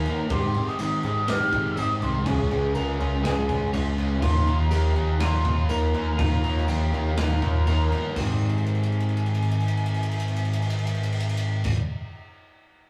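Shoegaze-tinged dream pop rock at 122 BPM in Ab major, this hazy, blissful piece, cut from a longer work, has a pure, vibrato-laden concert flute singing the melody over a bright, twangy, compressed twelve-string electric guitar playing arpeggios through Abmaj7, Db and Ebsus2. Behind them, a twangy clean guitar, a double-tracked overdriven semi-hollow guitar and a dark, thick fuzz guitar layer their riffs, anchored by a growling, overdriven picked bass and a big acoustic rock kit with a boomy kick. A jingly vintage tambourine enters at 0.8 seconds, and a drum fill runs from 8.4 seconds, all wrapped in the saturated ambience of a rough rehearsal room.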